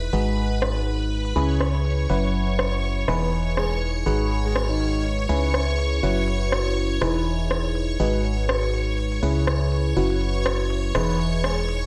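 Set in light reverb and digital ambience, this bittersweet yet energetic piano house excerpt cycles through G#m7, C#m7, F#7sus4 and Emaj7 over a swung groove. An up-front, biting FM electric piano plays a barking riff through chorus, phaser and delay, while a hollow, dark, organ-like FM bass sits beneath and a shimmering vintage string machine holds bright violin chords in ensemble chorus. An overdriven, layered house kit of hi-hat, rim click and shaker keeps time, and a soft, dreamy lead with vibrato floats in the background from 3.1 to 5.0 seconds and again at 10.9 seconds.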